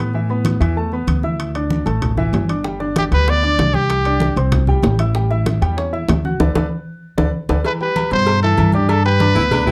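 A bright, punchy trumpet with vibrato stands out in this festive, sunny salsa excerpt at 192 BPM, playing up front in short solo statements from 3.0 to 4.4 seconds and again from 7.7 seconds to the end. A clear, intimate grand piano carries the accompaniment from the start, its action noise audible, while a woody pizzicato upright bass with steel strings sits up front beneath it. Congas with a thick, medium-tuned skin open the groove in a live room, joined at 0.5 seconds by ringing metal-shell timbales and agogo bells, with tight, high-tuned bongos and cowbell arriving in the background at 2.6 seconds. The harmony moves through Asus2, Dsus2, G and Cadd9 to A7 and D5, where a band accent and drum fill lead into a new section at 7.6 seconds over Cmaj7 and G. A tight saxophone section adds a brief second line in the final moments, all set in a moderate studio ambience with a dark, warm production.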